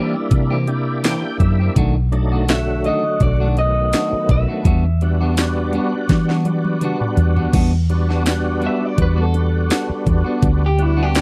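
A dry, close 1970s-style studio sound frames this smoky, mournful soul blues excerpt, where a thick, lightly overdriven tonewheel organ with key click, chorus vibrato and slow rotary speaker plays alongside picked stabs from a clean electric guitar, a dark, round, foam-muted bass and a knocking, cracking, overdriven drum kit with bright hats and tambourine sit up front, a compressed, slightly broken-up electric guitar carries the melody from 2.5 s, and after a drum fill the clean guitar takes a solo at 7.5 s.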